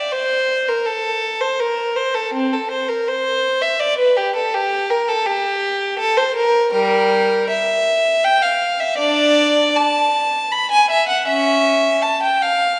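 A lone bowed violin opens this dance-like, radiant fragment of a baroque-style suite movement, its gut-string tone rich and reedy, with light period-style vibrato as it ranges from G3 to B5. The 3/4 pulse sits around 81 BPM but bends freely with rubato, settling into D minor from 6.7 seconds. The player sits up front, while a lush scoring-stage reverb and a distant room perspective soften the top end and let each phrase bloom through the 12.8-second passage.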